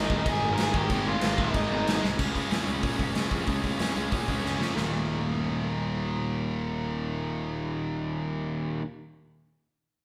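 Gritty, up-front raw garage drums in a bright stone room drive this rebellious, energetic punk rock excerpt at 187 BPM, with fills at 2.0 seconds and leading to 4.8 seconds, where the drums stop as a tight, distorted guitar and a hollow-body overdriven guitar in the background keep playing the riff over a growly fuzz bass, after a dark, smooth lead guitar melody rides over the first 2.0 seconds, all within a large studio reverb of a band playing live in one room.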